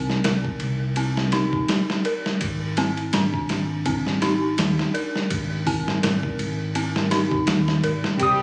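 Trip hop at 83 BPM with a smoky, cinematic mood, this short cut sets eerie, detuned synth bell arpeggios with chorus and tape echo over a dark, round hollow-body electric bass and a gritty, pitched-down boom bap sampler-style drum kit of thumpy kick, snare, hi-hat and ride, moving from Cm to Ab through phone-captured club reverb and vinyl crackle before a clean tremolo tine electric piano and a lush, distant violin section enter at 8.2 seconds.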